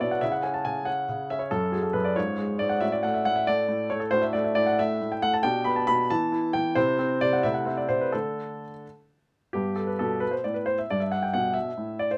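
A 6/8 at 91 BPM in dotted quarters, played with rubato, carries this playful, graceful classical-period piano sonatina fragment, where a solo concert grand, intimate and up front with deep bass, polished tone and audible action noise under light reverb, wanders through C#madd11 and F# harmonies before settling into G major from 4.1 s and arriving on a G chord at 9.5 s as a new section begins, the fragment ending at 12.2 s.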